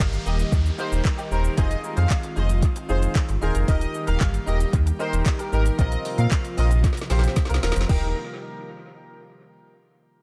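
Dance-pop at 114 BPM in Eb major, summery and upbeat, where a smooth detuned supersaw carries the melody with phaser and analog delay over clear baby grand piano accompaniment, an airy breathy pad holding chorused chords, a bright twangy clean electric guitar riff sitting in the background, and a deep sine sub bass pumping against an up-front R&B kit of soft kick, woody snare, dark hats, handclaps and shaker, with a downlifter sounding until 3.7 s and a drum fill from 6.8 s in a dry, echo-heavy mix cut from a longer piece.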